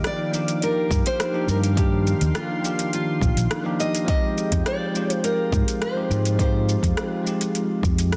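Sunset chillout in a relaxed, smooth mood, cut from a longer piece, where a fingerpicked nylon-string guitar carries the melody over a bell-like tine electric piano with tape echo and a lush, detuned chorused pad, while an overdriven deep house kit of metallic hats, rim click and shaker is joined at 0.9 seconds by a punchy fingered bass and a deep electronic kick, all set in a moderate scoring-stage reverb and a dense, heavily limited modern master.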